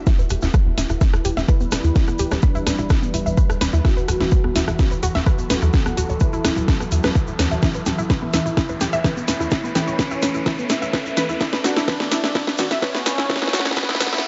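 Melancholic and dark, this melodic techno excerpt is one long build-up: a punchy, up-front electronic kick and an overdriven drum kit with a cracking snare, congas, hi-hat and rim click run a continuous fill, while a grainy shekere sits in the background. A tight, sawtooth sequencer bass drives beneath bright analog pluck arpeggios with tape echo and a thick unison lead with lush chorus and delay, both sweeping through a filter, while a deep, evolving ambient pad holds chords. A very quiet, warbling drone swarms in at 1.4 s and an electronic riser climbs from 4.0 s, all in a dark production with light reverb.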